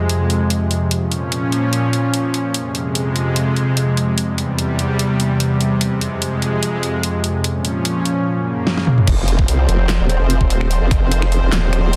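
A lush, detuned supersaw pad pumps with sidechain through sustained F minor chords as a dubstep drum kit with a huge snare, bright hats, snaps, claps, toms and crash sets a heavy, aggressive half-time groove at 147 BPM, until a drum fill at 8.7 seconds tips into the drop at 9.1 seconds, where a knocking electronic kick and an up-front, overdriven formant-sweep wobble bass with chorus and a detuned pulse-and-sine growl hit hard in a dense, heavily limited mix under a moderate plate reverb.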